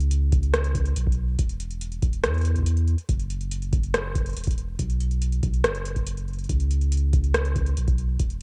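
A straight, even pulse in four runs through this intricate, eerie IDM fragment, carried by an analog drum machine's metallic hi-hats and rim clicks and joined at 0.3 s by a deep electronic kick, both drum parts carrying the worn grain of cassette tape and the boxy air of a small room. Beneath them, a round, mellow sine sub bass with a fast attack and sustained notes sits up front, moving between E1 and E2. Light reverb and a homespun cassette recording give the brief passage, cut from a longer piece, an intimate, slightly haunted character.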